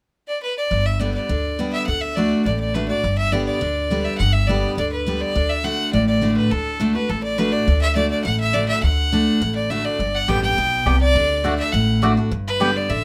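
Bluegrass with a lively, virtuosic spirit, taken at a brisk pace in straight 4/4. This is a short slice of a longer piece. A clear, intense bowed fiddle carries the melody from 0.3 seconds, played by a single player with light vibrato and sitting up front. At 0.7 seconds a full-bodied, picked dreadnought acoustic guitar joins as accompaniment, also up front, alongside a woody pizzicato upright bass holding down the low end. The harmony moves between G and D, and near the close, at 10.3 seconds, a mellow, round mandolin adds brief double-strung picked stabs. A moderate small-room reverb gives the group a close, natural sense of space.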